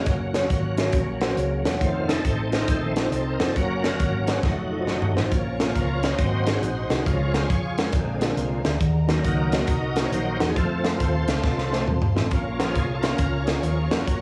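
A swung 4/4 pulse drives this short, solemn and soulful cut from a longer uptempo gospel piece, with a crisp fusion drum kit set up front, its high-tuned snare and punchy kick ringing in a small, pumping room, and fills at 4.4 and 11.4 seconds. A dark, round hollow-body electric bass plays fingered lines underneath, while a mellow tine electric piano sits in the background, clean and heard through its built-in speakers, adding accompaniment. The bright tonewheel organ takes the lead throughout, full and shouting, lightly overdriven with chorus vibrato and a fast rotary speaker, its sustained chords pushed to the front. At 5.3 seconds a lush, bowed studio string section enters in the background with smooth, even vibrato, filling in sustained chords as the harmony moves from Gb and F7 into Bb minor. The whole recording carries the soft grain of a home cassette, with plate reverb on the keys and strings and a light sense of space.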